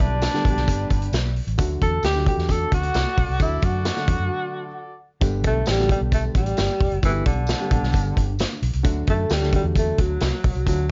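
Uplifting, warm uptempo 1960s-style soul at 132 BPM in G major, cut from a longer piece, where a breathy tenor saxophone with subtone, vibrato and scooped notes carries the melody up front over a punchy, foam-muted electric bass, a tight vintage drum kit, a woody, slightly detuned upright piano and a very quiet ringing vibraphone, while a roomy, distant horn section plays a second line until 4.9 s around a short break, all in a dry, dulled-top sound with a faint jingly tambourine.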